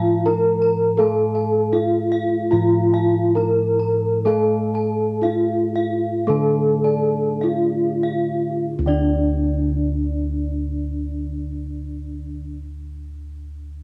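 This stately, shimmering Javanese gamelan excerpt moves in 4/4 between 46 and 83 BPM, slowing from 1.0 to 8.7 s before a new section begins. An up-front bronze metallophone carries the mellow melody with padded disc mallets, its paired tuning producing beating tones, while tape echo sits on that line alone. A lower metallophone struck with a wooden mallet plays the accompaniment, round bossed gongs and a bright, airy horn-mallet metallophone share high ringing arpeggios, and background gongs supply the bass, all captured as a home cassette recording with moderate spring reverb and boxy small-room ambience.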